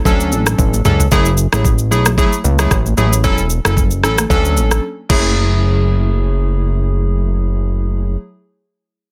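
Chorused analog keys with plate reverb and a fat, detuned sawtooth bass open this sultry, smooth afrobeats fragment alongside an up-front electronic afro-pop kit with a knocking kick, a snare with soft clipping and a drum fill ending at 1.1 seconds, while very quiet, high-tuned congas with thick skins sit low in the mix. The drums and congas fall out around a brief silent gap, leaving keys and bass to carry on until 8.2 seconds over a dense, heavily limited master.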